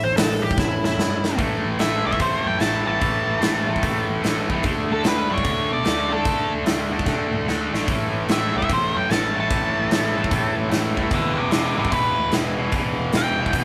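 A short, dark, smooth lead guitar solo opens this swaggering, driving cut of blues rock and southern rock at 148 BPM with a swung feel in A major, over a very quiet, gritty rotary-speaker tonewheel organ and a round, foam-muted vintage bass, before a punchy, big-room drum kit brings a fill and a bright, double-tracked distorted guitar riff takes over at 1.4 seconds, soon topped by an octave-fuzz lead melody, while the organ drops out and returns at 7.9 seconds in a rough, small rehearsal-room sound.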